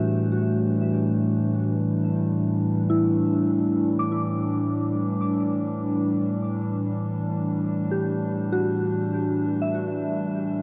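The sound is a dreamy wash soaked in a huge ambient reverb with a 7.7-second decay, its top end rolled off above 7.5 kHz. This reflective, melancholic ambient piece drifts in free time, tuned to A4 = 438 Hz, and is cut from a longer work. Up front, a warbling, tape-like pad built from detuned square and triangle tones holds sustained chords with a slow attack and long release, its nostalgic lo-fi colour thickened by chorus and its own reverb. Above it, a soft FM synth bell plays gentle arpeggios in pure, decaying tones, sitting further back in the mix and carried by chorus and tape echo. Both parts sound from start to finish across 10.6 seconds, moving from Em11/A to Em7/A at 3.0 seconds and back to Em11/A at 5.4 seconds.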